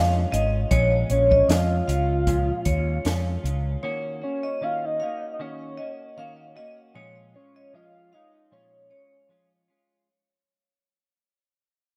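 A slow 77 BPM pulse in 4/4 carries a gentle 16th-note swing, set by a compact cocktail kit whose dry, high-tuned snare, punchy kick and hi-hat drop out at 3.6 seconds. This mellow, wistful bedroom-pop excerpt in Bb minor moves from Bbm7 to Ebm7 and back to Bbm7, and the whole passage is fading out. A round, up-front fretless electric bass anchors the opening until 3.8 seconds, while a clean, picked, compressed electric guitar with analog chorus and vibrato effect plays quiet accompaniment throughout. From 1.1 seconds, a soft octave-layered synth lead carries the melody, full-bodied and dark, with a sub octave, a fast attack and long sustain, colored by phaser, lush chorus and delay. A bright, metallic vibraphone struck with hard mallets, motor off, rings out a second line in the same high register, bathed in lush chorus and delay. A moderate, lush hall reverb surrounds the rough home-demo mix.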